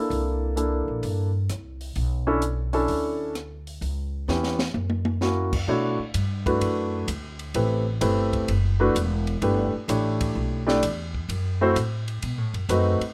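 An up-front concert grand piano with deep, full low end comps on the chords in this cool, moody small-group jazz excerpt in B minor, swinging at 128 BPM in 4/4. A woody pizzicato upright bass sits close beside it, while a compact cocktail kit with a dark, smooth sound, high-tuned snare and punchy kick keeps time on ride, hi-hat and rim, adding a fill at 4.3 seconds before the second section begins at 5.7 seconds. Light reverb surrounds the trio as the harmony moves from C13 and Bm11 through Am7, Dadd9 and G6 to a closing B7b9.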